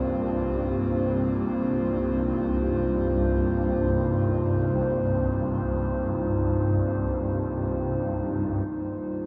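Dark ambient drone, unsettling and cavernous, heard as a short cut from a longer piece. A swarming, detuned drone of warbling sine tones sits low and up front with a granular, vintage grain, slow attack and long release, colored by its own reverb and a phaser, while a moody analog pad of square, sawtooth and triangle waves with a sub octave holds sustained chords above it through chorus and a moving notch. Both parts sound from 0.0 to 9.3 s inside a huge, wet reverb, the harmony shifting from Bbmadd9/C to Cm at 8.7 s.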